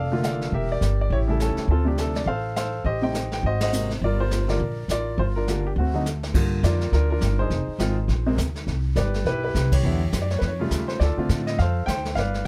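Piano and upright bass open together on a Bbmaj7 chord, with brushed drums joining at 0.2 seconds in this cool, smoky jazz piano trio fragment in G minor, taken from a longer performance. It moves at a brisk 206 BPM in 4/4 with a light swing on the eighth notes. The baby grand carries the melody with a clear, short-sustained tone placed up front, while the pizzicato upright bass sits just as close, woody and thumpy on its steel strings. Further back, the kit is played with brushes on a medium-tuned snare, joined by hi-hat, ride and crash cymbals and a boomy kick, with a drum fill at 6.1 seconds leading into the second half and full-band accents at 3.6 and 9.7 seconds. The harmony keeps shifting through chords such as Em7b5, Ab9, Fm7 and Aaug7 before settling on Dm7, all captured with close, detailed microphones and very little reverb in an intimate, natural small-room sound.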